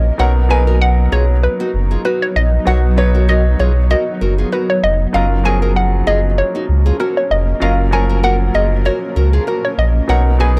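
A lightly swung 16th-note afrobeats groove at 97 BPM in F# major sets a sunny, breezy mood, anchored by a deep, full sub bass with octave sitting up front. A hollow, bouncy square pluck carries the melody with a warbling, vintage chorus and analog delay, while a clear, intimate grand piano with audible action noise and a fingerpicked nylon-string guitar, entering at 0.2 seconds with finger squeak and its own analog delay, move from Bmaj7 to F#maj7. A cloudy, evolving granular pad drifts in the background, and the dry, gritty recording carries transformer saturation throughout this short cut from a longer piece.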